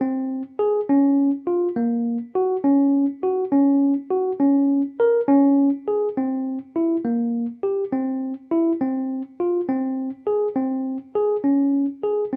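Contemporary instrumental music with a restless, hypnotic mood, moving at 205 BPM counted in eighth notes in a 9/8 metre with a straight feel. A tine electric piano plays alone for the full 12.4 seconds, staying within the octave from Bb3 to Bb4. Its tone is clean and runs through a combo amp, and it sits up front in the mix. Light reverb surrounds the sound, and lossy compression artefacts are audible in the recording. The tuning rests slightly high at A4 = 443 Hz, and the clip is cut from a longer piece.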